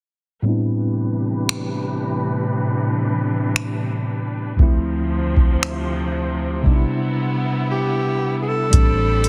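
Contemporary R&B at a sensual, longing 58 BPM in A minor: a mellow tine electric piano and a lush, bowed string section with expressive vibrato and portamento lay filtered chords moving from Am11 through Dm7 and Cmaj7, a dry, booming analog drum machine with a deep kick, metallic hats and finger snaps enters at 1.5 seconds, a raspy, gritty alto saxophone sings a brief solo line from 7.7 seconds, and a round, foam-muted fingered electric bass arrives at 8.7 seconds, all within a close, dense, heavily limited modern mix cut from a longer piece.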